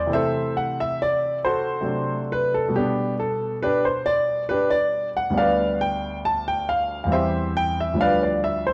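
Classical, baroque-style suite movement for solo grand piano in G major, unfolding at 68 BPM in 3/4 with a rubato feel and a radiant, serene mood. The clear, intimate piano sits up front, its natural tone and audible action noise heard across a range from D2 to A5 as the harmony moves from Am/C through D7/C and G/B to a G7/D chord at 8.0 seconds. A moderate recital hall reverb and a dark, warm production frame this short fragment cut from a longer piece.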